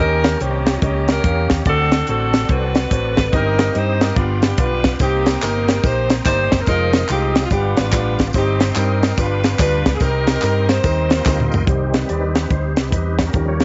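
This is a short cut from a longer piece, with light studio reverb and a soft, rounded top end. It is an uptempo gospel groove in a swung four, soulful and solemn in mood. A tight saxophone section carries the melody up front, its warm tone marked by light vibrato and a soft attack in a jazz style. Beside it, a dark, punchy fingered electric bass and a tight funk drum kit with a high-tuned snare and a firm kick sit close to the listener. Further back, a natural-sounding concert grand piano with deep lows provides accompaniment, while a clean tonewheel organ holds sustained chords through a fast rotary speaker and chorus vibrato, with audible key click. Tambourine, tube shaker and group handclaps join at 5.0 seconds, a drum fill arrives at 11.3 seconds, and the organ takes a solo from 11.7 seconds.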